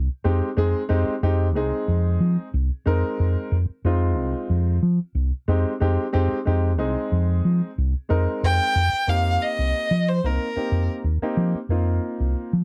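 A dark, round, punchy fingered electric bass opens this intense, slick jazz excerpt in F minor at 92 BPM with a swung feel, and a natural-sounding grand piano joins almost at once to comp over an Fm9 chord. At 8.4 seconds a single bowed violin enters up front with a focused, vibrato-rich melody and a smooth top, touched by slapback echo, just before the harmony shifts to F9sus4 at 9.1 seconds. The sound is dry and close, like a 1970s studio session, with bass, piano and violin all placed up front.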